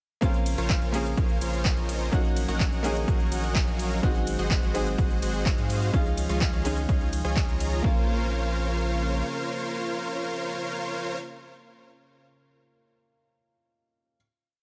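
Festival progressive house in a euphoric, powerful mood, this short piece opens on a drop where an overdriven, punchy four-on-the-floor kick and an overdriven big-room dance kit of crisp hats, shaker, rim, ride and claps drive a saturated sine sub bass, a huge detuned supersaw riff in dotted-rhythm chords with delay, a bright, worn baby grand piano playing held chords with syncopated pushes, and a lush chorused pad in the background, all pumping to the sidechain, before the drums drop away around 7.8 seconds and a final chord rings out until the piano ends at 14.2 seconds.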